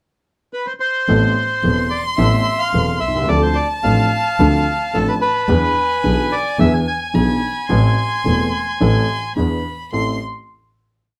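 A marcato pulse in four, laid down by the upright piano and bowed double bass, anchors this short, complete tango, though the feel stays rubato and elastic. The bandoneon opens alone at 0.5 seconds with a reedy, vintage, band-limited voice, sitting up front as it shapes a motif-based melody in period phrases. At 1.1 seconds the violin, piano and bass arrive together. The violin adds an expressive counter-melody with vibrato, portamento and a smooth top. The piano rings woody and clear with short sustain, while the double bass, a single bowed player, sounds biting and even with its own vibrato. The mood is melancholic and sultry, heard in a moderate club-sized room, and the piece settles on a final chord at 9.9 seconds.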